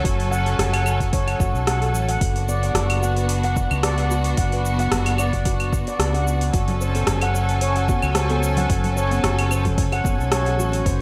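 Meditative and mystical, this organic downtempo excerpt sets ringing handpan arpeggios with digital delay over rich, bowed string chords with sidechain pumping, an up-front, round fretless bass with tube saturation, a deep overdriven electronic kick and a layered deep house kit of metallic hats, claves, rim click and shaker re-recorded in a large room, with hard-handed congas and bongos entering in the background at 6.7 seconds and a glassy, drifting harmonics texture with chorus surfacing at 7.7 seconds.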